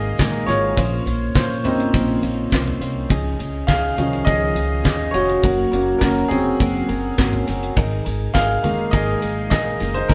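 A baby grand piano opens this hopeful, uplifting stretch of piano-driven pop, taking the lead with an open, long-sustaining tone placed up front, joined at once by a clean electric guitar riff and a woody, thumpy pizzicato upright bass. At 0.2 seconds a damped 70s drum kit enters with a tight kick, fat snare, dark ride cymbal, toms and handclaps, sounding dry and close. A jingly tambourine sits in the background, bright, close and dry. The direct-recorded guitar has a bright, picked, compressed edge against the warm tone of the piano. The chords move from Absus2 through Bbmadd9, Dbadd9 and Gb before returning to Absus2, in a steady straight four-beat feel. The band sounds as if playing live together in a stone room whose wet reverb fills out the whole performance, which is cut from a longer piece.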